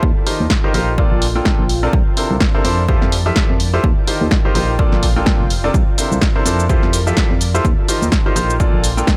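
Piano house at 126 BPM with a swung 16th-note feel, uplifting and euphoric in this short excerpt cut from a longer piece, cycling through Eb69, Bbmaj7, C13 and Fmaj9. A dry, punchy electronic kick sits up front from the start alongside a round, mellow FM bass and a blurred, evolving granular pad tucked in the background with its own reverb, the bass and pad both breathing with sidechain pumping. From 0.3 seconds a clear, polished concert grand carries the riff with dub echo and pumping, while a punchy analog drum machine adds hi-hat, shaker and snare in a tight, close-sounding mix.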